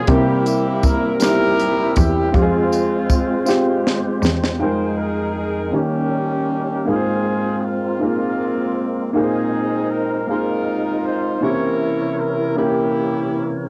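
Solemn and soulful, this slow gospel fragment in F minor moves at 53 BPM in a straight 6/8, with an up-front horn section carrying the melody in warm, punchy tones over baby grand piano accompaniment and the fat, clicking tonewheel organ holding chords in the background through a slow rotary speaker, all with a cassette-tape cast in a lightly reverberant home recording. A biting, nasal bowed cello plays the bass while a crisp, polished fusion drum kit with a high-tuned snare and punchy kick, plus a jingly tambourine, drives the opening until a drum fill from 3.5 s leads into the second section at 4.6 s, where cello, drums and tambourine stop. From there horns, piano and organ carry on alone through richer chords such as Fm11, Ab69 and C7b9.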